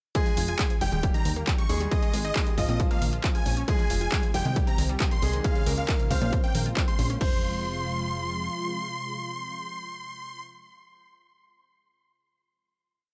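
Bittersweet and soaring, this short uplifting trance piece in F minor moves at 136 BPM in a straight 4/4, opening straight into a drop where a huge, detuned supersaw lead carries a repeating riff melody with sidechain pumping and tape echo, joined by a brilliant concert grand piano playing its own riff in octaves. Beneath them, an overdriven four-on-the-floor electronic kick sits up front alongside a programmed techno kit of hats, clap, mid tom and crash, while a punchy, funky analog bass plays off-beat and a lush unison pluck runs a 32-step arpeggio in the background. A silky, string-like analog pad with ensemble chorus and vibrato enters at 3.9 s, and after the drums stop at 7.3 s it joins the lead and piano to hold a final F minor chord in a dry, close sound.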